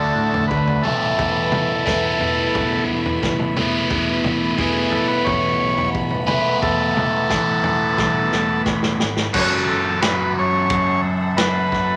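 A moderate large studio reverb surrounds this trippy, mysterious psychedelic rock excerpt, where a biting, double-tracked overdriven guitar riff with phaser and a buzzy vintage combo organ melody sit up front over a round fingered electric bass, a vintage drum kit with a punchy kick and dark cymbals, and a bowed sul tasto string section holding soft-attack chords in the background, while a shimmering tanpura drone buzzes barely audibly until 4.5 s; the chords move from Dadd9 to Esus4, and a drum fill from 8.0 s leads into a new section on F#m7 at 9.3 s.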